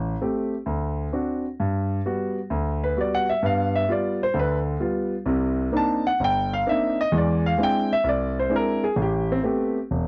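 Swinging in 4/4 at 130 BPM, this brief, relaxed solo jazz excerpt in G major rests on a grand piano with a warm, natural tone that sits up front across a span from E1 to A5. The harmony moves from Am7 and D7 into Gmaj7, then takes a sophisticated turn through G7, Cm9 and Eaug7 before settling on Am9, with the piano's solo passage running from 1.6 to 10.1 seconds. The sound is dry and close in a modest booth, with the intimate character of a 1970s studio recording.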